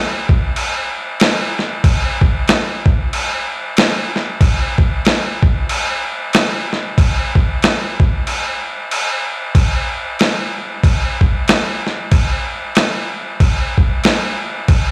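This metal excerpt moves at a hypnotic, sludgy 93 BPM in 4/4, with a swung eighth-note feel carried by a boom bap sampler-style drum kit that enters at 0.3 seconds. The up-front, compressed kit sounds gritty and pitched down, with a thumpy kick, a medium-tuned snare and crash cymbal. A break arrives at 8.3 seconds before a new section begins at 9.5, all heard as a live gig through the venue's PA with light club reverb.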